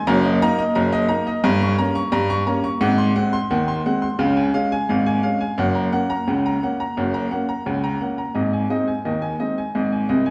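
A straight 2/4 pulse at 87 BPM drives this short, cheerful ragtime piano piece, cut from a longer work and tuned slightly sharp of standard pitch. A clear, woody upright piano plays solo from 0.0 to 10.3 s, reaching from deep Gb1 in the bass up to Db6. Its natural tone carries long sustain and sits up front, with a jaunty character throughout. The harmony moves through Ebm/Gb, Gdim and Ab7 before landing on Db, then passes through Gb to Ab, and a brief piano fill arrives at 10.1 s. A reverberant recital hall surrounds the playing with a roomy, church-like bloom.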